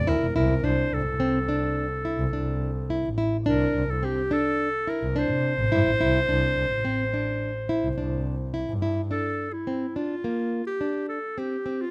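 Close, detailed microphones and a light reverb give this brief cut from a longer chamber piece an intimate sound, with each of its three parts placed up front. It is contemporary instrumental music in an uneven 5/4 metre with a straight feel, and its mood is restless and playful. A bright, close-miked clarinet carries the melody in a classical solo style. Beneath it, a fingerpicked nylon-string guitar plays full-bodied arpeggios on fresh strings, with audible finger squeak. A bowed double bass, played by one player, sounds intense and somewhat boxy, with vibrato and an airy bow, until it stops at 9.1 s. The harmony moves from C9 through D5/C and Cadd9 before shifting to Bbmaj13 at 9.1 s, as the clarinet and guitar continue to the end of the excerpt.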